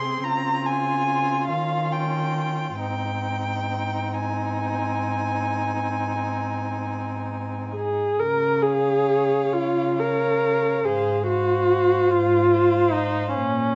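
Four muted strings begin together: a veiled first violin sings the melody high above a darker second violin, while the close, up-front viola carries the accompaniment and a cello with gentle portamento supplies the bass. This tender, serene slow romantic movement for string quartet drifts in 12/8 at about 43-50 dotted-quarter beats per minute with a rubato feel, opening in Ab major over lush chords like Dbmaj7 and Eb9 before settling into Db major at 8.2 s. The bowed, con sordino playing is softened by vibrato and light reverb, and this fragment of a longer piece ends with the violins at 13.3 s and the viola and cello at 13.8 s.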